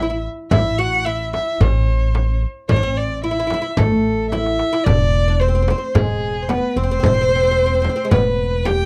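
A straight 4/4 pulse at 110 BPM comes from a crisp metal-shell darbuka struck with hard hands in the background and a frame drum with a small-room sound, and a drum fill from 4.3 seconds leads the music from A maqam rast into E maqam saba at 4.9 seconds. In this festive, stately Arabic maqam ensemble piece, a single rich, focused bowed violin with vibrato carries the melody up front, while a bright, fretless, plectrum-plucked oud with double strings plays a second line and a pizzicato, woody upright bass with steel strings holds the low end. The dry, close 1970s-style studio sound has light reverb, and the passage is cut from a longer piece.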